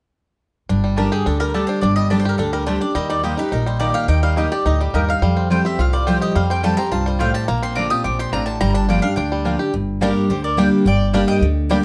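A picked mandolin melody with slapback echo leads this lonesome, haunting bluegrass excerpt in G minor at 213 BPM, backed by a bright, full-bodied dreadnought guitar up front, twangy fingerpicked banjo arpeggios, a thumpy pizzicato upright bass and mellow mandolin stabs, with a reedy bowed fiddle adding a second line from 10.0 seconds.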